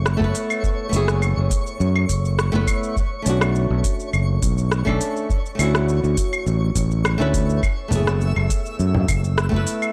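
A woody, fingerpicked flamenco guitar with tape echo opens this relaxed, smooth sunset chillout excerpt in F# minor at 103 BPM, over a growly, up-front overdriven fingered electric bass and a sparkling granular shimmer, as a tape-warm R&B kit of cabasa, claves, smooth hi-hat and rim click joins with a deep analog electronic kick, soft low-tuned congas surface distantly at 7.9 seconds, and F#m11, Bm9 and Dmaj7 chords circle back to F#m11 in a dry, gritty mix.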